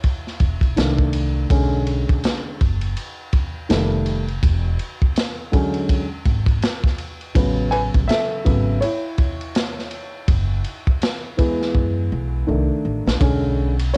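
A swung sixteenth-note groove in 4/4 drives this cool, nocturnal jazz-hop cut, taken from a longer piece, with a crunchy, gritty breakbeat kit up front, its tight kick and dark cymbals rolled off through cassette tape, and a pizzicato upright bass entering at 0.4 seconds with a woody, growly thump and transformer saturation. A dark, mellow upright piano carries a solo over extended jazz chords that open on a rootless voicing, sitting close and intimate with audible action noise and its own cassette-tape grain. The drums break into a fill from 11.7 to 13.2 seconds, all in a dry, vintage home-cassette sound.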